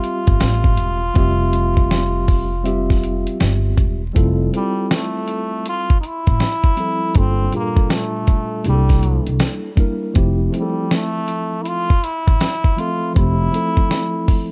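A swung, relaxed jazz-hop groove rides on a gritty, compressed sampler-style kit with a thumpy kick, fat snare and hi-hat sitting up front, joined at 0.3 seconds by a woody pizzicato upright bass that stops at 13.5 seconds. A mellow, clean tine electric piano carries the harmony, moving from an open Fmaj7 into a Gm7 and C13 turn around 7.2 seconds. Over it, a trombone with a metal mute plays a buzzy, breathy jazz solo line, all in a small room with a dark, warm production and vinyl crackle that gives this excerpt a laid-back feel.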